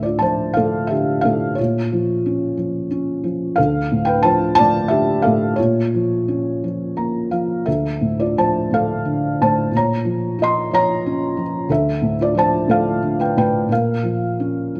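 In a rubato 6/8 lilt at roughly 56-62 BPM counted in dotted quarters, this wistful, dark classical excerpt features a solo felt-muted upright piano, mellow and intimate with thick felt and audible action noise, set up front in light reverb and spanning D2 to C6 as it sways between Dm and Bbm, with a brief fill from 6.6 to 7.7 seconds.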